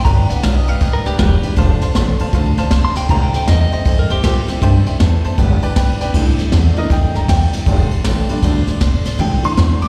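A clean, compressed electric guitar carries the melody with slapback and tape echo over a bright, dreadnought-bodied acoustic guitar, a thumpy gut-string upright bass up front and a brushed drum kit with dark cymbals and a boomy kick, setting a rowdy, upbeat, swung rockabilly groove at 158 BPM in C major; the guitar melody stops at 4.5 s, and a worn, slightly detuned upright piano with slapback echo takes a solo from 6.1 s, the whole band heard as a live gig through the venue's PA in recital hall reverb.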